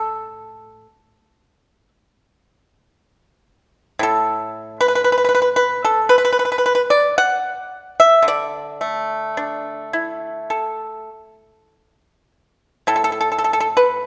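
A solo pipa carries this short passage cut from a longer piece of Chinese traditional music, its bright, percussive attack set up front and played with fingerpicks. The mood is pastoral and flowing, with a rubato feel loosely centered between 48 and 59 BPM in 4/4. The pipa spans a range from A2 up to F#5, playing alone for the full 14.1 seconds. Its own tone stays dry and acoustic, while a moderate reverb from a church or concert hall space adds a gentle sense of air around it. The opening section holds until 12.9 seconds, when a brief new section begins and runs to the close.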